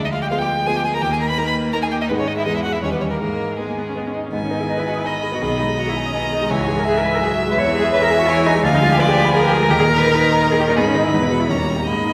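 A quick classical-period movement for piano quintet in G# minor and 3/4 at 167 BPM, this stormy, dramatic passage is cut from a longer piece and shifts into a new section at 4.3 seconds. An up-front violin carries the melody with smooth, even vibrato, while a second, intense violin with an airy bow and a rich, distant cello weave second lines beneath it. A background viola and an up-front concert grand piano with deep, natural bass supply the accompaniment, all set in a wet concert hall reverb.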